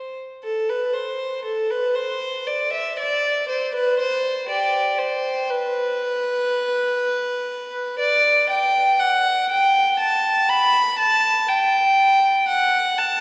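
Classical baroque-style suite movement for unaccompanied violin, dance-like and radiant, unfolding with a free rubato feel in this brief passage cut from a longer piece. A single bowed violin sits up front for the full 13.2 seconds, its period-style gut-string tone rich and reedy, with light vibrato across a range from G4 to B5. A wet church reverb with a long 3.3-second decay surrounds the playing in a spacious, resonant church.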